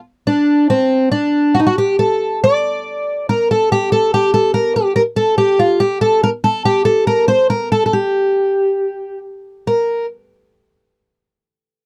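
Rubato phrasing stretches and pulls against a loose duple metre, giving this fado passage a free, breathing pulse. The mood is full of longing and passionate. A fingerpicked twelve-string acoustic guitar carries the passage alone, entering at 0.3 s and ringing through to 10.1 s. Its octave-doubled strings give a shimmering, auditorium-sized tone that sits up front in a mid-register span. The sound is dry and close, with little reverb, in the manner of a 1970s studio recording. A new section begins at 9.6 s just before the guitar falls silent, and the music is cut from a longer piece.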